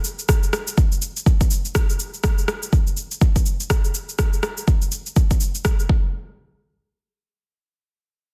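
A swung 16th-note groove at 123 BPM in 4/4 drives this short afro house cut, taken from a longer piece and carrying an earthy, spiritual mood. An electronic cabasa and rim click layer opens the track, and a deep electronic kick drum joins at 0.3 s, sitting up front and punching through the mix. Both percussion parts are layered and overdriven, lending them a gritty bite, and each carries a touch of studio reverb, though the overall sound stays close and fairly dry. The cabasa and rim click drop out at 5.9 s, just before a new section begins at 6.1 s. The master is dense and heavily limited, giving the drums a thick, modern weight.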